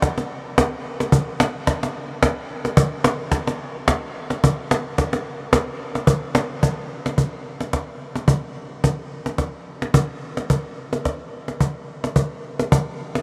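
A lightly swung 3/4 pulse at 109 BPM carries this meditative, hypnotic world music excerpt, where a lone woody cajon, played with soft hands and faint snares, sits up front with a vintage, band-limited tone inside a vast, echoing space whose huge ambient reverb trails about 7.4 seconds, shifting into a new section at 6.6 seconds before the cut at 13.2 seconds.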